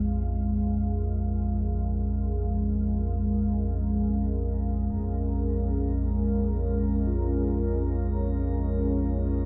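A deep, rumbling drone opens this dark ambient excerpt in Bb minor, sitting low and up front with a warbling, detuned vintage character and its own reverb, while a moody analog pad holds sustained Bbm7 chords above it with a mellow chorus and shimmer reverb. The music moves in free time, its cavernous, desolate mood carried by slow attacks and long, sustained tones. Around 4.9 seconds a taiko ensemble struck with heavy sticks makes a brief, barely audible appearance. From 7.1 seconds a bronze singing bowl rings on F4 in the background, its metallic, slow-beating tone drawn out with a suede striker and trailed by shimmer reverb. The whole piece sits in a wet cathedral reverb that gives the dark, warm production a vast sense of space.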